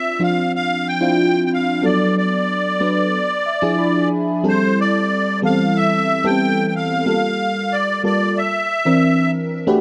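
Glossy and upbeat, this short pop excerpt at 92 BPM sets a reedy, shimmering musette accordion melody up front over a dreamy FM electric piano with a soft pad layer and lush chorus, which adds a fill from 3.1 to 4.4 seconds as the chords move from Dm9 through E7b9 to C9, all captured in a dry, close 1970s-style studio sound with moderate booth ambience.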